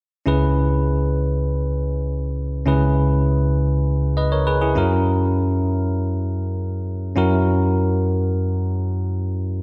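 A bell-like tine electric piano carries this short pop excerpt alone, sounding bright, clean and up front as it plays from 0.3 to 9.6 seconds in free time. The mood is nostalgic and moody, set in C# dorian with a tuning reference of A4 = 439 Hz. The piano ranges from C#2 to D#5, moving from a C#m7 chord at the start to F#7 at 4.8 seconds. A moderate, lush hall reverb with a 2.4-second decay surrounds the performance, while the overall production leans dark and warm. Cut from a longer piece, it feels like a reflective fragment suspended in space.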